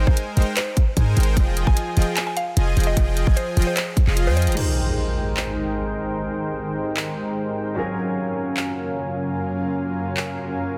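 Future bass at 150 BPM in a half-time 4/4 feel, this playful, bright passage in Ab major is cut from a longer piece and opens on a drop, where a soft, detuned supersaw riff and a deep, boomy 808-style bass pump with the sidechain over a hard-clipped electronic kick, while a woody, round FM pluck carries the melody up high with chorus and dub echo. A trap kit with bright hi-hats, handclaps, ride and crash runs underneath from 0.2 seconds, and the chords move from Abmaj7 to Fm9. The kick drops out just before a drum fill at 4.4 seconds, and at 4.6 seconds an electronic impact hits as the bass, kick and pluck fall away. A very quiet grand piano takes up the accompaniment, and a shimmering, ethereal pad with an octave-up sparkle, warbling vintage detune and built-in reverb fades in slowly under a filter sweep, as the harmony settles from Abmaj7 to Gbmaj7. The mix is dense and heavily limited, with light digital ambience and small-room character on the drums.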